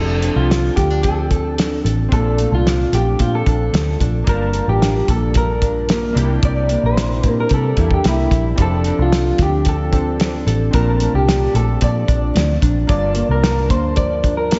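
A sunny, nostalgic bedroom-pop excerpt in F major at 111 BPM opens on a slightly broken-up, compressed electric guitar melody through a small old amp, bathed in lush chorus and tape echo, over glossy, airy retro synth keys with a cassette-tape haze, a fingerpicked nylon-string guitar with subtle chorus and warbly pitch drift, and a dark, round, foam-muted picked bass, before a cloth-damped, thuddy drum kit with a tight kick enters at 0.2 s, all cycling through F6, Bbmaj7, Gm7 and C7 in a dreamy, reverb-soaked mix with a softened top end.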